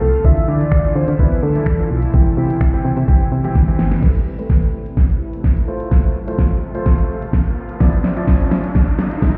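A bittersweet yet energetic dance-pop excerpt in A minor at 127 BPM opens with a soft, octave-layered synth lead carrying a brief melody over clear, intimate grand piano with audible action noise, a shimmering, ethereal background pad, and a punchy, round FM bass, all driven by an up-front R&B drum kit with a knocking kick, fat snare and finger snaps; once the lead drops out at 3.0 s, a drum fill leads into a build-up with a filter sweep over the pumping piano and pad, a background riser enters at 5.8 s and a very quiet, jingly tambourine arrives at 8.3 s, the whole mix sounding muffled as if heard through a wall, with stone room reverb.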